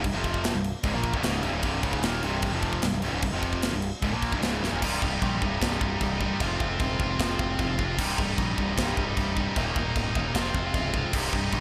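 A fragment of epic, aggressive heavy metal opens with a scooped, high-gain guitar riff up front, backed in the background by a double-tracked overdriven guitar and another distorted guitar, along with a growling picked bass played direct and amped with overdrive and an up-front, big-room acoustic drum kit with bright china and crash cymbals, a medium-tuned snare and tight kick, until a drum fill at 4.6 seconds leads into a half-time section from 4.8 seconds, heard in a dry, close sound.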